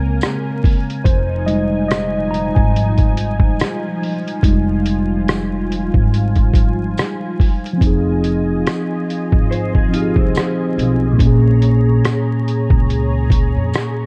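A relaxed 71 BPM groove in 4/4 with a lazy sixteenth-note swing drives this reflective, hazy lo-fi hip hop piece in F minor, built on compressed, pitched-down sampler drums up front with a thumpy kick, hi-hat and rim click, a faint jingly tambourine in the background, and woody pizzicato upright bass. A mellow tine electric piano sits up front with cassette-tape coloring and takes a solo over the first 7.8 seconds, while a smooth, detuned sawtooth pad with chorus holds slow-attack chords beneath, moving between Bbm7 and Fm7. At 9.5 seconds a slightly broken-up electric guitar through a small old amp adds a brief second line soaked in lush chorus and analog delay, inside a dark production dusted with vinyl crackle.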